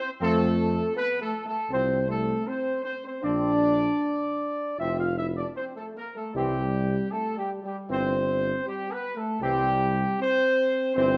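A dark trumpet section sings the melody up front over sustained chords from a distant French horn section at the start of this triumphant, solemn classical ceremonial fanfare in C major at 78 BPM, joined almost at once by clear trombones held in the background and a roomy solo tuba carrying the bass, as the harmony moves from F to Bbadd9 at 3.2 seconds and C at 6.4 seconds within a recital hall's moderate reverb captured by close, detailed microphones.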